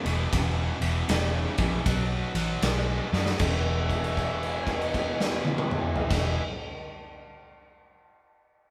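Gritty and swaggering, this short excerpt from a longer piece is blues rock power trio crossed with southern rock, rolling at 78 BPM in 4/4 with a swung eighth-note feel in E mixolydian. A tight, double-tracked distorted guitar sits up front with a bright, picked riff low in its range, while a vintage fingered electric bass, foam-muted and dark, adds a round, punchy bottom through an amp. A big acoustic rock kit with a punchy kick, a medium-tuned snare, crash, ride and toms sounds mid-forward and up front, its top rolled off. Underneath, a very quiet overdriven tonewheel organ holds thick sustained chords, with key click, second harmonic percussion, vibrato and a slow rotary speaker. The harmony moves from E7#9 to B7#9, and a drum fill at 3.0 seconds leads into a held note over E13 from 3.4 to 6.0 seconds, all captured as a band playing live in a stone room with a moderate one-second reverb.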